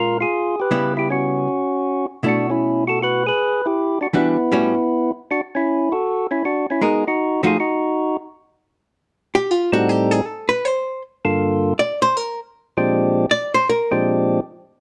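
Close, detailed microphones and light reverb frame this bluesy, soulful jazz fragment, swinging in 4/4 at 157 BPM. A fat, lightly overdriven tonewheel organ with third-harmonic percussion and a stopped rotary speaker carries the melody up front from 0.0 s, beside a dark, clean, compressed hollow-body archtop guitar that plays picked accompaniment. At 8.3 s the guitar takes a solo over the shifting extended jazz chords, and the piece is cut off as the organ stops at 14.4 s.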